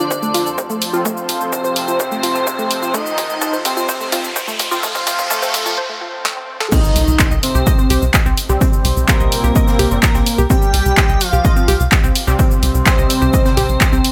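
Cut from a longer melodic techno piece in C dorian at 127 BPM, this dark, melancholic passage opens on an F chord with a fat, detuned analog lead carrying the melody over an airy, dreamy second line, a warbling lo-fi pluck arpeggio, a lush unison pad in the background and a punchy, tape-warm kick up front with a layered house kit of snare, claps, hi-hat, shaker and crash. Filter sweeps on the arpeggio and the edgy, nasal sync-sweep polysynth stabs drive a build-up with drum fills and a background riser, a brief break and swell as the pad stops at 5.7 seconds, before the drop lands on C minor at 6.7 seconds with an impact. There a very quiet acoustic brush kit with a high-tuned snare joins, and a tight, driving sequencer bass enters at 7.0 seconds, pumping under the sidechain with the synths in a light reverb.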